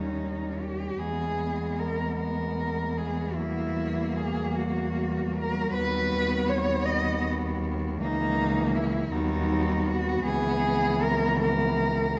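In a 6/8 with uneven, rubato beats, this serene classical passage for a cello ensemble unfolds slowly, cut from a longer piece. A warm, expressive solo cello sings the melody with vibrato and portamento over a rich, soft-attacked second line that also slides between notes. Beneath them, a dark, woody cello adds accompaniment and a clear, smooth cello carries the bass, all four bowed with vibrato in a moderate scoring-stage reverb as the harmony drifts from D#7 toward a closing C#m7.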